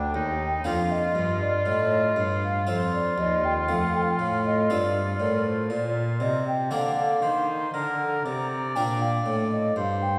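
A grave, solemn baroque-style sonata movement with continuo in Bb major, moving at a slow 59 BPM in a straight 4/4, cut from a longer piece and heard over roughly 10.2 seconds. A mellow, hollow wooden flute with vibrato carries the melody from a distant place, while an up-front oboe with a smooth top and soft attack sings the second line, and a bowed, nasal gut-string cello anchors the bass beneath a round, plucked harpsichord. The harmony passes from Gm to F7 at 1.7 seconds before settling on Bb at 5.7 seconds, all bathed in the reverberant air of a recital hall.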